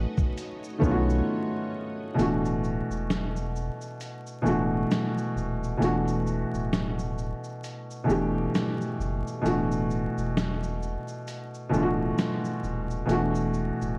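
A felt-muted upright piano sits up front in this nostalgic, hazy lo-fi hip hop excerpt, its soft, intimate chords carrying audible action noise and a short sustain through a low-pass filter. Beneath it sit a round sine sub bass and a gritty, compressed sampler-style drum kit with a fat snare, hi-hat and shaker, swung in 4/4. A lush sawtooth string machine with ensemble chorus holds sustained chords at the opening, with a brief break at 1.3 s, until 2.2 s, when the thumpy kick drops out as the harmony moves from B7 through D69 and Em11 toward E9sus4, all wrapped in light digital reverb, vinyl crackle and a dark, warm production.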